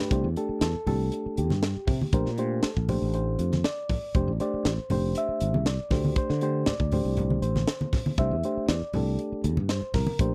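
A straight 4/4 groove at 119 BPM drives this funky, bright electric jazz fusion piece in C mixolydian, where a tight small-room funk kit with a high-tuned snare sits up front beside a growly, punchy fretless electric bass, damped, low-tuned congas with a saturated thin-skin snap join at 0.9 s, and a reedy, mellow electric piano comps cleanly through C6/9, Bbmaj9, F6 and D5 before returning to C6/9, all captured in a dry, close 1970s-style studio sound.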